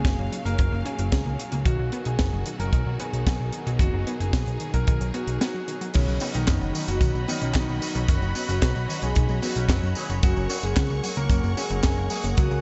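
A tight, dry acoustic kick sits up front in a straight 4/4 pulse at 112 BPM, joined by a polished funk kit with a high-tuned snare, hi-hat, handclaps, tambourine and crash cymbal in a small, airy room. This sunny, romantic italo disco passage in F# major moves from F# to B and back to F#, with a short break at 5.4 seconds before the second section begins. A fat, saturated sawtooth bass holds the low end up front, while a round, detuned analog pluck plays chorused arpeggios with delay in the background. Over a lush, bowed string section sustaining chords with vibrato, a clear baby grand piano carries the melody, its long sustain roughened by vintage 12-bit sampler grit and analog delay. From 6.2 seconds a clean, twangy electric guitar adds compressed stabs through an envelope filter and analog chorus, and the mix carries light reverb with a soft top end in this section cut from a longer piece.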